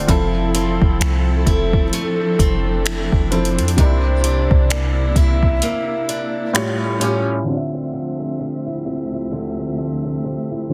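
A dense, heavily limited and dry mix, dulled by a low-pass filter and touched by faint mains hum, frames this sensual, longing contemporary R&B excerpt in D minor at a slow 65 BPM with a swung sixteenth feel. A mellow felt-muted upright piano with audible action noise, a lush bowed string section pumping under sidechain, and a boxy ladder-braced acoustic guitar picking arpeggios with finger squeak carry the harmony from Fmaj7 through C9 and A7b13 to Dm9, while a deep, round 808-style bass sits up front beside a smooth electronic drum kit of finger snaps, metallic hi-hat and soft kick, its snare softly clipped. A detuned, octave-layered synth lead with chorus, phaser, tape echo and vibrato sings the melody from 1.5 s, the bass drops out at 5.6 s for a break, and a filter sweep carries the closing section from 7.5 s.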